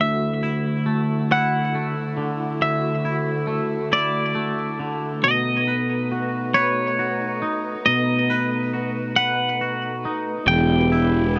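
A short booth ambience gives this rock excerpt a close, dry sound, with the guitars sitting up front and a dark, intimate string section bowed softly behind them. In a straight 6/8 and a hopeful, soaring mood, a clean, fingered electric guitar carries the melody in a high register, its warm twang trailed by digital delay. A second electric guitar, bright, picked and compressed, plays arpeggios across a broad range, shimmering through lush chorus and its own delay. The strings hold sustained chords with light vibrato, soft attacks and a smooth top, following the harmony from Dadd9 to B7 at 5.2 seconds. At 10.5 seconds, as the chords arrive on Em, a growly, overdriven fuzz bass enters on a low E, punching up front just before the fragment cuts off.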